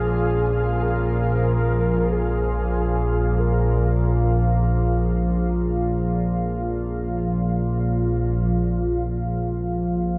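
Drenched in a long cathedral reverb, this dark, unsettling excerpt of dark ambient drone drifts in free time in Bb minor, with a shadowy, warm production. Up front, an organ-like drone sits low, its slow attack and long release shaped by ensemble chorus and phaser, while a deep, moody pad of detuned sawtooth and sine layers with a sub octave, wave-folding and ring modulation sustains chords beside it. A mellow, round, horn-like synth lead carries a brief melody with vibrato, chorus and tape echo before falling silent at 4.7 seconds. Barely audible beneath, a bronze singing bowl struck with a wooden striker rings with metallic, slowly beating overtones until 8.5 seconds. From there to 10.2 seconds, a filter sweep on the drone marks a new section.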